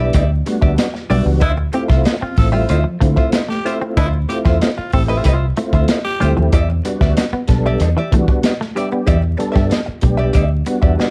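A straight 4/4 funk groove at 94 BPM rides on a crunchy, saturated breakbeat kit of kick, snare and hi-hat and a round, foam-muted fingered bass up front, with a metallic vintage cowbell tucked in the background, setting a sly, funky mood over Em7 and Dm9. A compressed hollow-body jazz guitar plays picked accompaniment through wah, a clean semi-hollow guitar riffs with tremolo in the background, and a tonewheel organ with key click adds stabs through overdrive, chorus vibrato, a slow rotary speaker and plate reverb. From 1.4 to 6.3 seconds a bright, raspy tenor saxophone adds a second line, and the whole excerpt sits in a dark, warm production with light reverb and vinyl crackle.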